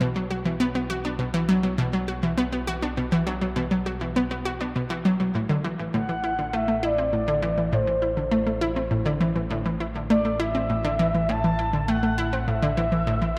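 A bright, up-front analog pluck carries the riff in this short excerpt of ambient, sequencer-driven space music, its detuned sawtooth and pulse-wave tone given a fast attack, short decay and a noise layer, spread by chorus and delay across a range from A2 to F#4. Beneath it, an analog drone holds the bass between A1 and B1, a vintage, warbling sound shaped by pulse-width modulation, and it fades in from the opening over the full 13.4 seconds. At 5.9 seconds an expressive portamento lead enters with the melody, a smooth, mellow sawtooth voice with vibrato, gliding between C5 and A5 under subtle chorus and delay. The music moves at 101 BPM in a straight 4/4, centred on A dorian with tuning at A4 = 444 Hz, and the chords shift from B5 to A5 at 5.3 seconds. A wet spring reverb with a 2.7-second decay and an echo-heavy mix wrap the parts in a mysterious, hypnotic haze.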